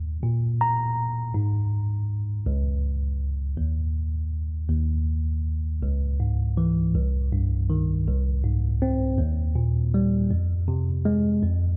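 A dry, close recording places a lone tine electric piano up front, its worn, slightly out-of-tune tone sounding clean and direct. This hopeful, intimate folk fragment, cut from a longer piece, moves in an unhurried 6/8 at 54 BPM, reaching from deep bass notes up into the upper register. After an opening passage free of set harmony, a new section at 5.8 seconds moves through Dbm, Cm, Ab/C and Eb before settling on Fm at 10.3 seconds.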